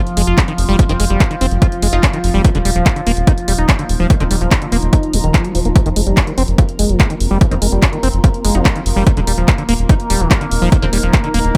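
A straight 4/4 psychedelic trance pulse at 145 BPM drives this hypnotic excerpt, built on a punchy, up-front electronic kick and a small-room drum kit of handclaps and bright hats, with a deep, round analog bass anchoring the low end beneath a squelchy liquid acid bass riff carrying chorus and tape echo, while an overtone-sweeping, ring-modulated drone pumps sustained chords over F5 and Eb5, a very quiet cloudy granular pad blurs the background, and a juicy, phased blip pluck adds a faint second line from 0.9 to 4.4 seconds and again from 7.5 seconds.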